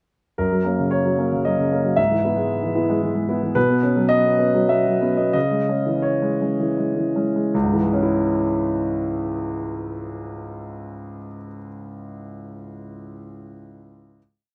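This neoclassical minimalist piano miniature is reflective and wistful, moving in a rubato 3/4 between 77 and 115 BPM in C# dorian, with a single concert grand playing alone from 0.4 to 14.2 seconds. A single-line melody sits over inner broken chords, passing through F#, E/G#, Bsus2 and C#m as the tempo slows from 2.8 seconds before a closing chord arrives at 7.5 seconds. The piano sounds warm and open, with deep bass and long sustain, placed up front in a dry outdoor recording with little reverb.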